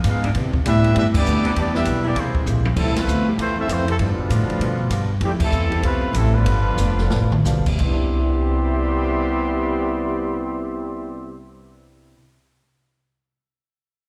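Big band swing in a joyful mood, cut from a longer piece and heard through a live venue's PA, where a mellow trumpet section carries the melody over a trombone section's second line, both with light vibrato, plate reverb and slapback echo. A clear saxophone section holds background chords until 2.4 seconds, and a woody pizzicato upright bass sits up front. An open drum kit with dark cymbals and a boomy kick adds fills around the band accents before stopping at 7.9 seconds as the tempo slows. A very quiet, clean hollow-body archtop guitar accompanies throughout, and a very quiet grand piano with deep bass joins at 2.8 seconds.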